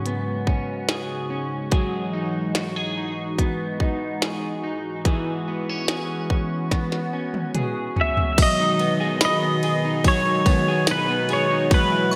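Ethereal and hazy, this dream pop excerpt moves at 72 BPM in G# minor, with a swirling, detuned analog pad holding sustained chords under a slightly broken-up, twangy electric guitar playing arpeggios through chorus and delay, while a glitchy electronic drum kit with a tight kick, tiny snare and clicky hats sits up front in gated reverb and closes the opening with a fill from 6.7 to 8.4 seconds. At 8.0 seconds a clean, compressed pedal steel guitar enters with a slide melody in volume swells, and from 9.2 seconds a crystalline FM synth bell glints in the background over the G#m7 harmony that arrives at 8.4 seconds. The whole is bathed in a lush hall reverb with a bright 1980s-style digital sheen.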